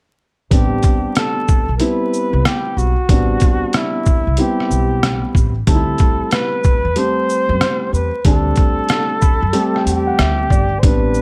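Mellow and nocturnal, this short jazz-hop excerpt moves at 93 BPM in 4/4 with a swung sixteenth-note feel, centered in A dorian. A roomy, distant-sounding flugelhorn carries the solo melody with jazz-style vibrato and an analog delay, its voice sitting up front in the mix. Underneath, a dark concert grand piano adds vintage, intimate accompaniment with audible action noise and deep bass, and it slips in a fill from 8.9 to 10.8 seconds. A woody pizzicato upright bass anchors the low end, while a gritty, compressed, pitched-down sampler-style drum kit with a thumpy kick, rim click, hi-hat and shaker sits prominently, sounding re-recorded in a small room. The harmony shifts from Am11 to D9sus4 at 5.7 seconds, all wrapped in a dark production with light reverb and vinyl crackle.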